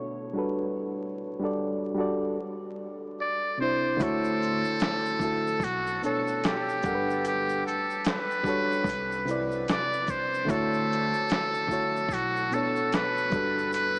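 Lo-fi hip hop at 74 BPM in D major, dreamy and mellow, with a lazy swing on the sixteenths and a mix soaked in a huge ambient reverb, vinyl crackle and a small-speaker sound. A reedy electric piano opens alone, up front with cassette-tape colour and a low-pass filter, moving through Gmaj9 and C. At 3.2 seconds a muted trumpet takes the solo melody in a jazz style, buzzy and thin through its metal mute, filtered and trailed by analog delay. At 4.0 seconds the rest of the band arrives: a woody pizzicato upright bass sitting in the background, a gritty, compressed sampler-style drum kit with a thumpy kick, medium-tuned snare, hi-hat and shaker re-recorded in a small room, and a very quiet, grainy tube shaker. From there the chords drift through Dmaj9, Bm9, Gmaj9 and Cmaj7, a hazy passage cut from a longer piece.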